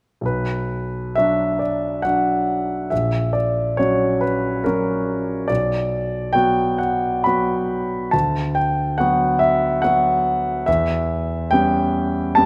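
A concert grand piano, clear and up front with deep bass, long sustain and audible action noise, carries this passionate, brooding romantic character piece alone from 0.2 s to the end at 12.5 s. Cast in 3/4 with a flexible, rubato feel, the passage moves through darkly shaded harmonies in B minor, settling on a half-diminished chord at 10.7 s. Close, detailed microphones keep the playing intimate while a moderate recital hall reverb lends space to this short excerpt from a longer work.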